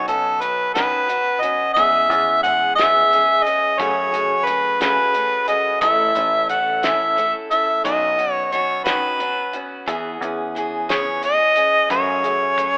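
A clear, up-front harmonica carries the melody with light vibrato and a punchy, pop-style edge in this open-road, nostalgic stretch of folk and heartland rock in 6/8. Beneath it, a boxy parlour steel-string acoustic guitar is picked through Badd9, E6, F#madd9 and A, a warm picked electric bass holds the low end, and a cloth-damped drum kit thuds with a fat snare, tight kick and rolled-off top. The rough home-demo mix has a telephone-like tone, set in a lush hall reverb over small-room ambience.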